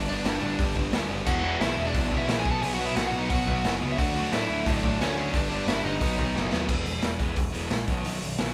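Crunchy, bright overdriven lead guitar carries the melody over two sludgy distorted rhythm guitars in the background and a growling, overdriven picked bass in this upbeat, rebellious punk rock excerpt at 177 BPM, with a raw, gritty garage drum kit entering at 0.3 seconds up front with a punchy kick and dark cymbals, all heard as a band playing live in one room with moderate studio reverb, before a drum fill at 6.3 seconds leads into a new section where the lead guitar and one rhythm guitar drop out by 6.7 seconds.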